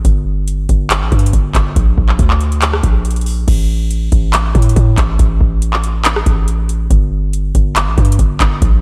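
Trap-flavored hip hop at 140 BPM in a half-time feel, this short excerpt carries a menacing, melancholic mood. A booming analog drum machine sits up front throughout, its deep kick, metallic hi-hats, handclaps, rim clicks and crash cymbal carrying a tape-warm character, re-recorded in a small room. Beneath it, a hard-hitting 808-style bass moves between G1 and A2, its punchy sine tone layered with noise, with a fast attack and a decaying tail that feels heavy and close. Both parts run for the full 8.8 seconds. The piece shifts into a new section at 3.5 seconds, and the dry mix keeps reverb to a minimum.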